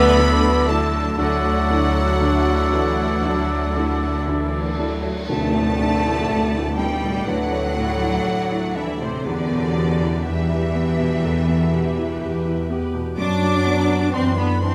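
A clear, intense violin section carries the melody of this bittersweet, moving film score excerpt, its vibrato sounding lush yet slightly distant over a rubato pulse in four. Beneath it, a second violin section adds a rich, smooth line, joined by a dark clarinet, a pure, hollow silver flute with a crisp attack, and a soft-edged oboe solo that drops away at 4.9 seconds. A viola section and a felt-muted upright piano, thin and intimate, fill in the accompaniment, while a mellow, roomy French horn section holds sustained chords in the background. The cello and double bass sections anchor the low end with full, bowed tone, the basses sitting up front in the mix. Very quiet, close and dry cymbal swells and tam-tam add dark colour from 1.2 seconds, and the full ensemble accents the move into the second section at 5.3 seconds as the harmony drifts from Dadd9 through Dsus2 and Em to Bm/F#. A moderate scoring-stage reverb lends the orchestra a spacious, cinematic glow.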